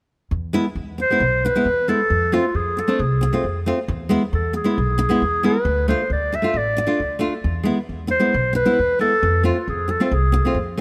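A warm, classical-style clarinet carries the soulful, festive melody up front with a touch of analog delay, entering at 1.0 seconds over a full-bodied, fingerpicked nylon-string guitar with audible finger squeak (from 0.5 seconds) and a woody, dark pizzicato upright bass (from 0.3 seconds), in this straight 4/4 klezmer excerpt at 135 BPM in E phrygian dominant, moving between E, F and Dm in a rough home demo mix with light reverb.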